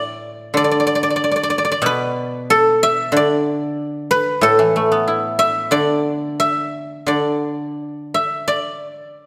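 A solo guzheng, played with fingerpicks and sitting up front, carries this serene, flowing piece of Chinese traditional music, its silvery, ringing tone spanning from A2 to E5. The pulse is nominally 92 BPM in 4/4 but moves freely in rubato, with the instrument tuned to A4 = 442 Hz. A moderate scoring-stage reverb with a 1.7-second decay surrounds the plucked strings across this 9.3-second passage cut from a longer piece.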